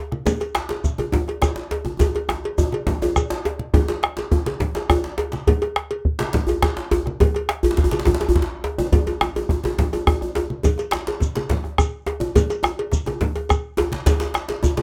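A straight 12/8 at 139 BPM drives this earthy, driving West African traditional drum ensemble excerpt, where a deep, dark bombo sits close and dry up front beneath bright, damped low-tuned congas, a compressed, saturated metallic cowbell, a tight, cracking djembe with metal rattles struck by hard hands, a second medium-tuned djembe heard distant in a large room yet up front, and a grainy, mellow, vintage-toned shekere that drops out at 3.3 seconds and returns at 10.6 seconds, with a drum fill near 2.0 seconds leading into the longer second section, all in a rough home-demo mix with light reverb.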